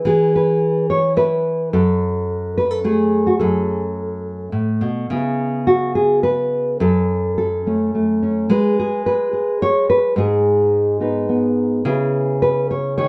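A dark, thumb-plucked nylon-string guitar sits up front in this haunting, intimate solo folk fragment in 3/4, its fresh strings ringing with a classical touch and a slapback echo inside a moderate, large studio reverb. It opens by moving between E and F#m, then at 5.1 seconds shifts to a second passage that drifts through C#m7, F#m and G#m before returning to C#m7 at 11.9 seconds.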